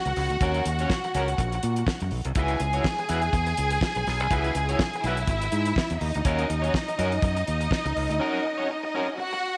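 A moderate echo-chamber reverb, with a 1.5-second decay and a small-room ambience, surrounds this short, danceable, sultry disco excerpt cut from a longer piece, which moves at 123 BPM in 4/4 with a light 16th-note swing. A damped 70s drum kit sits up front with a fat snare, tight kick, hi-hat and a rolled-off top, entering together with a bright, punchy fingered electric bass at 0.1 seconds; the bass stays direct and forward until both stop at 8.2 seconds. A lush, bowed studio string section carries the second line with clear, focused vibrato, heard both up front and with a distant sheen, and it plays to the end at 9.6 seconds. Underneath, a picked, twangy electric guitar at the edge of break-up adds a tremolo-treated accompaniment, slightly gritty and warm. The harmony moves from D#m7 to C#m7 and back to D#m7, giving the groove a smoky minor-seventh colour.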